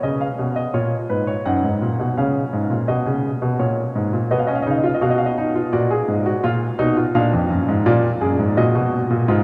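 A steady, straight 4/4 pulse at 84 BPM drives this short passage, cut from a longer baroque-style fugue in three parts for solo grand piano. The mood is both driving and contemplative, with the counterpoint unfolding over a span from E#2 up to F#5 across its 9.4 seconds. The piano has a warm, natural tone with short sustain and sits up front. Around it, a wet cathedral reverb with a 5.7-second decay places the instrument in a vast, echoing space. The harmony moves from C# through F#maj7 and B to A# and A#7, arriving at D#m/A# around 8.6 seconds.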